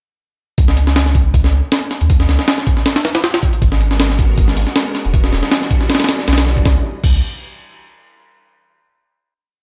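Nostalgic yet frenetic, this short drum and bass piece with a jungle edge runs at 158 BPM in C# dorian, with a light swing on the sixteenths. A sampler-style breakbeat kit drives the whole drop from 0.6 seconds, heavily chopped, compressed and pitched up, with a thumpy kick, a high-tuned snare, hi-hat and crash sitting up front with the grit of a break re-recorded in a large room. Underneath, a soft dub sub bass holds long, dark, round notes from E1 to D#2, mellow and sustained. At 3.6 seconds a silky vintage string machine fades in behind them with ensemble chorus, its slow-attack chords moving one shape in parallel through G#m9 and Em9 with syncopated pushes. The piece settles on a final C#m9 chord at 6.7 seconds, and the dry, gritty hardware sound keeps the whole mix close and raw.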